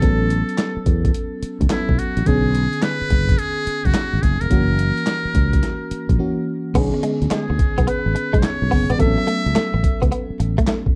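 A dark, lightly reverberant mix carries this bouncy, slick new jack swing groove with swung sixteenths, anchored by a gritty, pitched-down boom bap drum kit sitting up front with thumpy kick, snare, hi-hat, handclaps and crash cymbal. A growly, punchy fretless bass and a mellow FM electric piano with a noise layer support a buzzy, brilliant muted trumpet melody, close-miked with light vibrato, scooped notes and tape echo. At 6.8 seconds a bright, clean, direct-recorded electric guitar adds a picked riff through ensemble chorus in this short cut from a longer piece.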